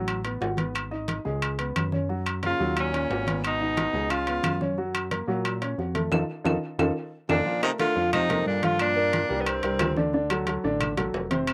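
A straight 4/4 groove at 179 BPM drives this lively, danceable Afro-Cuban jazz excerpt, with ringing, saturated timbales, woody claves and low-tuned, thick-skinned congas in the background, under an up-front baby grand piano and a fat, detuned analog bass. A punchy, forceful tenor saxophone carries the melody from 2.5 s with a clear, soft-attack baritone saxophone beneath it, both with vibrato, while the piano, timbales, claves and baritone carry a slapback echo in a dry, roomless outdoor sound. During a band accent and a drum fill, the horns return at 7.3 s, and the key then moves from F# major to Bb major at 7.5 s over chords like Bbmaj13 and Gm7.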